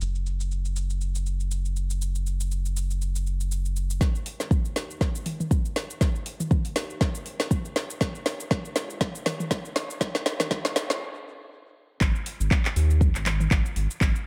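A swung sixteenth-note groove opens this spiritual afro house cut, with a tape-tinged afro-pop kit of cabasa, handclaps, metallic hi-hats, a woody snare and toms riding over a round, nasal analog bass that is deep, dark and sustained, with tube saturation and sidechain pumping. A layered electronic kick drum with a deep, up-front thump joins at 4.0 s as a build-up unfolds with a drum fill and a filter sweep, then the music stops briefly at 11.0 s before the drop lands at 12.0 s. The mix is echo-heavy with light studio reverb, and the mood stays warm.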